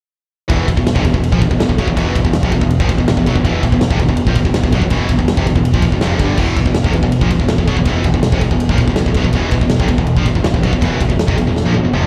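Heavy metal with an epic, relentless mood, cut from a longer piece and heard as a live gig through a club PA, where two tight, bright distorted electric guitars pick a riff over an E5 chord, one sitting in the background, while a growling, overdriven fingered bass adds punch and a big, up-front acoustic drum kit with a punchy kick, medium-tuned snare, toms and bright crash and ride cymbals drives straight ahead until a drum fill at 11.6 seconds.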